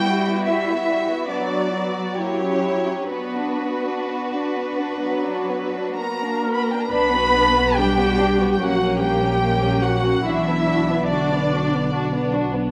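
Muted violins carry a veiled, yearning melody up front over a distant second violin line, close violas and dark cellos in this slow, rubato B minor movement for string orchestra at 59-74 BPM, cut from a longer piece, with con sordino double basses entering at 6.9 s beneath a melancholic progression from Gmaj7 through F#7b9 to Bm, set in a moderate scoring-stage reverb.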